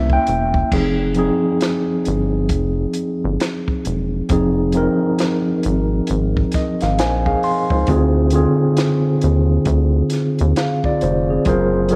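Soulful and sultry, this slow neo-soul R&B excerpt moves at 67 BPM in F dorian with a swung sixteenth-note feel, carried by a mellow, up-front tine electric piano accompaniment that plays a fill from 6.1 to 7.9 seconds over chords moving from C7b9 to Fm7 and then Dm7b5. Beneath it, a rubbery, hollow square bass with a bouncy filter pluck sits up front, while a compact cocktail drum kit of kick, snare, hi-hat and crash adds a punchy kick, high-tuned snare and dark cymbals with a rolled-off top. Light reverb and small room ambience give the track an intimate sound.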